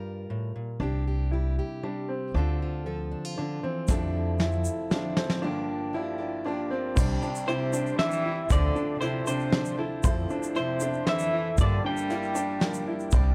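An electric guitar through a small old amp carries the melody from 7.5 seconds, its slightly broken-up, lo-fi tone colored by tremolo and tape echo, while a rich cello, bowed sul tasto with a soft attack, floats a second line beneath it. This is anthemic indie folk in 3/4 with a straight feel, built up layer by layer across a cut from a longer piece. A fingerpicked plugged-in steel-string acoustic guitar opens alone, soon joined by clear, woody arpeggios from an upright piano and a thumpy, gut-strung pizzicato upright bass sitting up front. At 3.9 seconds a soft brush drum kit with dark cymbals, a fat snare and a punchy kick arrives with a fill. Alongside it come a grainy, close tube shaker, a felt-muted upright piano murmuring in the background, and a boxy, picked ladder-braced acoustic guitar with audible finger squeak. The fingerpicked guitar drops out at 5.4 seconds as a brief break leads into the fuller second section, all set in a dark, warm production with light reverb over a cycle of Gm7, Csus2, Dm7 and Fmaj7.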